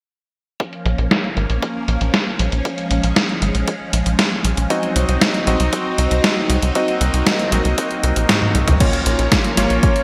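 Bright 1980s-style digital production in a lush hall gives this bittersweet, melodramatic italo disco excerpt its gloss: a swirling, phased string machine holds slow-blooming chords over a punchy, overdriven electronic kick, a tape-warm, detuned 8-bit digital drum machine with gated reverb, and a tight, driving sawtooth sequencer bass with a filter pluck, while a clangy, chorused electric grand piano enters at 4.7 seconds with cutting stabs trailed by delay, and a drum fill at 8.3 seconds leads into a new section at 8.8 seconds.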